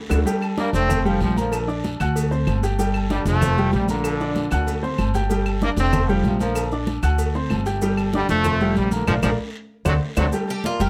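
A punchy trombone section carries the melody up front in this passionate, driving salsa excerpt, over a clear, polished upright piano and a thumpy pizzicato upright bass cycling through G5, Fadd9, Bb and D7 before landing on Gm7. Behind them sits a background percussion bed of bright congas, tight high-tuned bongos and cowbell, ringing timbales and agogo bells in a large room, woody claves, a raspy saturated guiro and grainy maracas, with drum fills around 4.5 and 9.4 seconds. A metallic, picked Cuban tres steps forward only at 10.5 seconds, in the closing moments.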